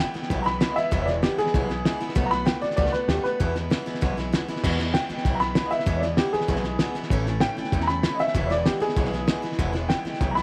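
A slightly detuned, woody upright piano carries the melody up front in this upbeat, retro rockabilly excerpt at 194 BPM in E major, over a bright, full-bodied picked steel-string acoustic guitar, a thumpy gut-string upright bass played pizzicato, and a muffled, gritty cloth-damped drum kit with dark cymbals, a fat snare and a tight kick, all set in light reverb and small room ambience.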